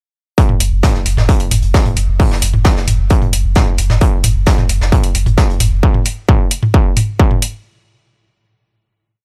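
A straight 4/4 four-on-the-floor pulse at 132 BPM drives this relentless peak-time techno piece. Its distorted, up-front electronic kick runs from 0.4 to 7.3 s beside an overdriven techno kit of programmed hats and backbeat with open hat and mid toms, while a vintage brush kit adds a looped breakbeat with edits, filtered hats and a medium-tuned snare in a small, pumping room, and a round, deep sine sub bass rumbles between the kicks with sidechain pumping until 5.8 s.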